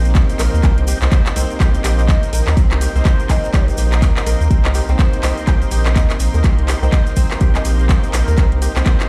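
A barely audible downlifter opens over a moody, detuned analog pad, ringing fingerpicked kora arpeggios, gritty overdriven tonewheel organ stabs with slow rotary speaker, a grainy tube shaker and a round analog bass up front, the pitched parts each pumping against the kick on a held Cm7, as this driving, hypnotic afro house excerpt at 124 BPM in C minor adds an afro-pop kit with handclaps and metallic hi-hats, a layered electronic kick from 0.2 s and a hollow bansuri melody with delay from 0.4 s, all heard as if on a big sound system in a bare stone room.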